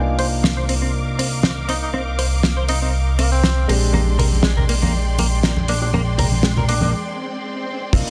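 Nu-disco at 120 BPM in a straight 4/4, this short excerpt has a sensual, groovy feel, moving from Cm11 to Bb13. A mellow, chorused synth bass sits up front with a glossy, retro pulse-wave and detuned sawtooth character and sidechain pumping. Above it, a clear grand piano carries the accompaniment through 12-bit sampler grit, analog delay and a filter sweep, while a lush, biting string section holds bright, distant chords. A clean, direct-recorded electric guitar plays a compressed, picked riff through ensemble chorus and delay, over a damped 70s kit with a fat, dry snare, hi-hat and crash. A clear tenor saxophone takes the solo melody with light vibrato and tape echo from 1.7 s, and congas and bongos join at 3.9 s. A break arrives at 6.9 s, where an electronic swell comes in before a tight, dry kick lands at 7.9 s, all in a light small-room ambience with a dense, heavily limited master.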